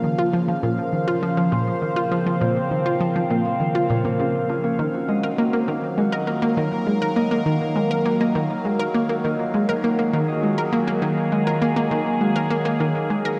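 Ambient, sequencer-driven space music at 101 BPM in a straight 4/4, this brief excerpt feels hypnotic and expansive. An up-front analog pluck carries the riff with a round, detuned sawtooth tone, its fast attack decaying through chorus and analog delay. A phased analog pad, also up front, holds sustained chords with a swirling, evolving character, its slow attack and long release colored by phaser and chorus. In the background, a fingerpicked concert harp plays ringing arpeggios, its acoustic tone echoed by analog delay. All three parts play throughout, over a harmony that moves from Bbm to Ebmadd9 at 4.8 seconds. A lush hall reverb and a dark, warm production give the sound a deep, enveloping space.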